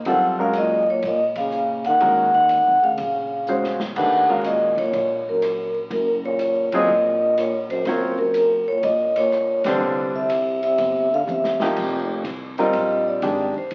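Intense and hypnotic, this modal jazz swing passage is led by a ringing, metallic vibraphone up front with slow motor vibrato, joined by a breathy, whispered trombone second line and accompanied by a natural baby grand piano with short sustain. A woody, growly pizzicato upright bass sits in the background beneath an acoustic drum kit with dark cymbals and a punchy kick; the band hits accents together and the drums play fills, while the trombone stops at 11.7 s and the vibraphone takes a solo from 11.8 s over a change of harmony. The sound carries a large studio reverb and the crackle of a very old 78 rpm record, and the passage is cut from a longer piece.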